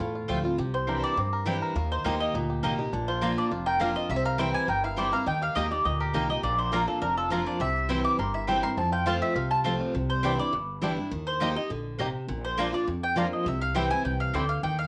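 Bluegrass with a rustic, joyful spirit, this passage cut from a longer piece pairs a twangy, percussive fingerpicked banjo melody with a woody, double-strung mandolin lead that enters at 0.7 seconds, while a second, up-front mandolin adds picked stabs from 0.3 seconds. A full-bodied dreadnought guitar with fresh strings picks the accompaniment up front, and a thumpy gut-string upright bass is plucked underneath. The guitar and the stabbing mandolin both carry a cassette-tape colour, and the whole home cassette recording sits in a wet studio reverb.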